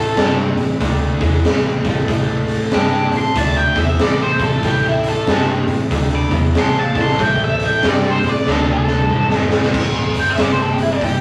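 Opening on a dark octave-fuzz lead guitar melody over a background biting lead line, a double-tracked overdriven rhythm riff and a round, punchy fingered bass, this gritty, brooding blues rock and southern rock power-trio excerpt in A minor swings at 94 BPM as an up-front, muffled, lo-fi garage drum kit with a high-tuned snare enters at 0.2 s and fills from 8.5 s before a short lead guitar solo arrives at 9.8 s, all in a rough rehearsal-room sound with small room ambience and saturation.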